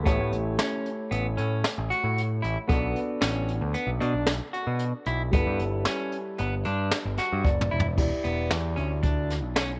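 A dark, mellow concert grand piano with deep bass and a boxy tone and a gritty, overdriven picked bass open this intricate, bright progressive instrumental excerpt in 5/4 at 114 BPM in A mixolydian, moving through A7, Bm7 and G69 before settling on Em7 at 8.0 seconds. A clean electric guitar spins picked arpeggios in the middle register, while an up-front brush kit with a high-tuned snare, punchy kick, dark cymbals and toms keeps a straight feel. Piano and drum fills arrive just before 8.0 seconds to carry the piece into a new section, all in a light reverb.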